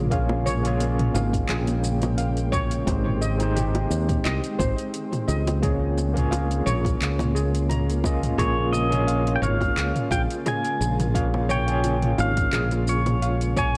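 Sunset chillout with a wistful, relaxed mood and a light swing, cut from a longer piece, where a growly, up-front fingered electric bass and an overdriven electronic kick anchor a deep house kit of metallic hats, handclaps, shaker and toms, with very quiet, low-tuned bongos close and dry. A barky, gritty tine electric piano with fast tremolo and tape echo comps over a very quiet, ethereal granular pad, while a bright steel pan struck with hard rubber sticks plays arpeggios through the chords Bbm7, Abmaj7 and Db6. At 8.4 seconds a clean pedal steel guitar enters with a sliding melody, and the whole recording carries the worn, warbling pitch drift of old cassette tape under a light reverb.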